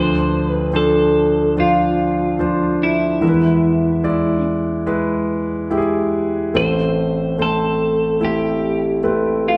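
A clear concert grand piano stands up front in this heartbroken, longing pop ballad fragment, its intimate sound carrying deep bass, long sustain and audible action noise beneath the melody. Above it, a twelve-string electric guitar carries the tune in a bright, twangy, compressed voice, its clean picked lines staying in a narrow upper-middle range. Both parts play throughout, moving in a straight, unhurried 4/4 through a short progression of Dm7 and E that comes home to Amadd9, giving the phrase an aching close. The pair sounds like a band playing live in one room, bathed in a wet, large studio reverb that lends the polished performance a spacious, wistful glow. Cut from a longer piece, the passage feels like a single held breath of regret.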